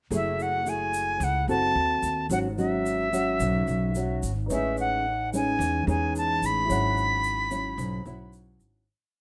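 A bright, reedy concert flute with vibrato sings a motif-based melody up front over thumb-plucked nylon-string guitar, woody pizzicato upright bass and a grainy egg shaker in this sunny, breezy E major bossa nova at 110 BPM, with a grand piano joining at 4.5 seconds on held chords in the background before the short piece fades out from 6.7 seconds.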